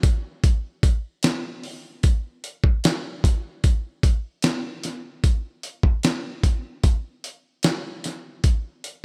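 A rough home-demo sound with light reverb frames this hazy, laid-back indie pop fragment from a longer piece, set at 75 BPM in a straight 4/4. A dusty, sampler-style soul drum kit plays throughout the 9 seconds, sitting up front with hi-hat, a thumpy kick and a fat snare. Its compressed, gritty tone carries the character of being re-recorded in a small room.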